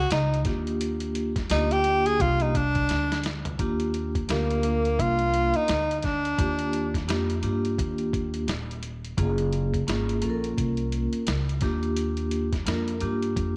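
An 86 BPM groove in 4/4 swings its sixteenth notes, setting up a cool, warm slice of jazz-hop in Eb major, cut from a longer piece and tuned slightly below standard pitch. A breathy tenor saxophone carries the melody up front with vibrato, scooped notes and a smooth top, taking a jazz-style solo through the opening 3.6 seconds before falling silent at 7.1 seconds. Beneath it, a woody, dark pizzicato upright bass on gut strings plays the low end, while a dusty, compressed sampler-style drum kit, re-recorded in a large room, brings a gritty texture, a thumpy kick, a medium-tuned snare, hi-hat and toms, with a drum fill at 2.9 seconds. A vibraphone played with soft mallets sits up front as accompaniment, its metallic, ringing, airy tone shimmering with a slow motor vibrato. The harmony rests on Ebmaj9, moves to Gbmaj9 and returns to Ebmaj9, all framed by a light studio reverb.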